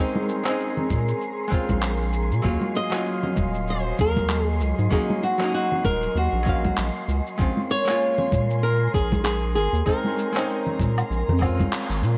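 Smooth and warm, this sunset chillout excerpt at 97 BPM in Eb dorian, with swung 16ths, sets a fingerpicked flamenco guitar melody with delay, entering at 2.8 s, over a dark, clean archtop guitar also carrying delay, a breathy chorused pad, a background wind-like noise texture, soft-handed congas, gritty sampled cabasa, handclaps and woodblock, a thumpy compressed kick and a round, deep analog bass up front, all bathed in lush hall reverb and the warbling pitch drift of worn cassette tape, before a band accent at 11.7 s.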